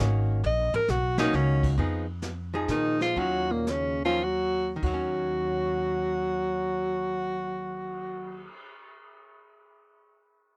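A light reverb surrounds this cool, moody jazz excerpt in small-group swing and bop style, set in 3/4 and Eb minor at 94 to 135 BPM and slowing through its middle stretch, where a clear, up-front alto saxophone carries the scooped, vibrato-rich melody over a dark, clean, compressed hollow-body electric guitar, a woody pizzicato upright bass, and a distant, roomy brushed drum kit with dark cymbals and a boomy kick that enters with a fill at 0.4 seconds, while a breathy tenor saxophone adds a mellow subtone second line from 2.7 seconds.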